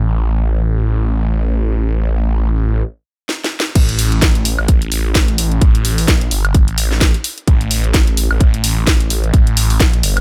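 The sound is dry and close, with little reverb around any part. This aggressive, gritty bass house cut from a longer piece runs at 129 BPM in 4/4, with a 57% swing on the sixteenths. A thick, swirling sawtooth bass, detuned and saturated with a phaser, overdrive and sidechain pumping, sits up front from the opening and holds low between G1 and Bb1. A stop arrives at 2.8 seconds, and at 3.3 seconds a house drum kit of crash cymbal, hi-hat, cracking snare and woodblock enters with a short fill leading into the drop at 3.8 seconds. There a punchy electronic kick joins, up front alongside the kit, both layered and re-recorded in a small room, driving the gritty bass until just before the end.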